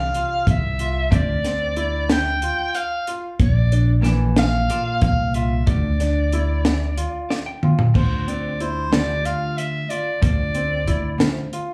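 Intricate and driving, this progressive instrumental excerpt in 7/8 at 184 BPM in D minor sets a breathy, vibrato-laden soprano saxophone melody over a dark, clean hollow-body jazz guitar, a woody, thumpy pizzicato upright bass, a compact cocktail drum kit with a punchy kick and high-tuned snare, and arpeggios from a concert grand piano with a deep low end, all heard live through a club's PA, with a guitar fill from 7.0 seconds and a drum fill from 7.3 seconds leading into a new section at 8.0 seconds.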